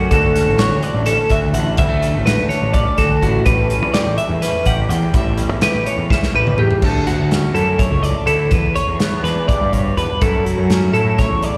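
A bright, compressed twelve-string electric guitar spins slapback-echoed arpeggios up front in this short, intricate and playful math rock and midwest emo cut, over a twangy, fingered electric guitar accompaniment touched with ensemble chorus. A growly, overdriven fuzz bass and an acoustic drum kit, with a punchy kick, a medium-tuned snare and a pumping room sound, drive the fast 7/8 pulse at 249 BPM in eighths. A drum fill at 6.1 seconds leads into a second passage at 6.8 seconds that moves from Dmaj7 through Em7 to F#m7 after the opening A9, all heard as a live gig through the venue's PA.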